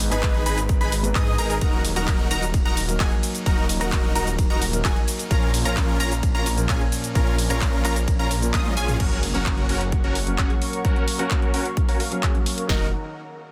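A dense, heavily limited modern master with digital ambience frames this emotional, powerful festival progressive house drop, cut from a longer piece, where a huge, euphoric supersaw lead carries the riff through tape echo and a low-pass filter sweep from 9.0 s, over a thick, menacing detuned saw bass with tube saturation, a big-room drum kit of up-front, punchy kick and snare layered with an overdriven kit of hi-hat, handclaps, cabasa, toms, ride and crash, bright phaser-tinged unison pluck arpeggios, and a soft, intimate felt-muted upright piano with tape echo, before a lush, airy unison pad of sustained chords and a very quiet impact join at that same moment, with the synths and piano all pumping to the sidechain.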